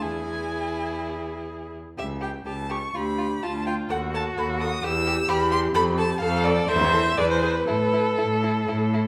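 Stormy and restless, this quick classical-period movement for string quartet moves at 126 BPM in 4/4 with an uneven, rubato pulse, its harmony shifting restlessly from E through D minor and a diminished chord toward a closing A. Up front, the first violin carries the melody with a rich, expressive tone, vibrato and portamento, while the second violin plays a focused, smooth-topped inner line and the viola adds bowed accompaniment with vibrato. The cello anchors the bass with a clear, even sound, and a wet recital-hall reverb surrounds all four players through this roughly 9-second cut from a longer piece.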